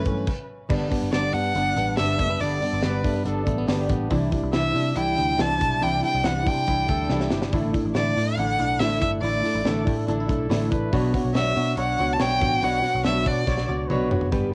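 Jangly indie pop in B minor at 141 BPM, bittersweet and wistful, with a clear, focused violin singing the melody up front over fingerpicked, full-bodied steel-string acoustic guitar, twangy direct electric guitar arpeggios with spring reverb, a dark, round muted bass and a punchy studio drum kit, while a breathy, whispered trumpet slips in at 2.8 s with a soft second line, all carrying the hazy texture of a home cassette recording through chords moving from G to Cadd9, Asus4 and Bmadd9, with drum fills at 7.1 s and 13.5 s in this excerpt from a longer piece.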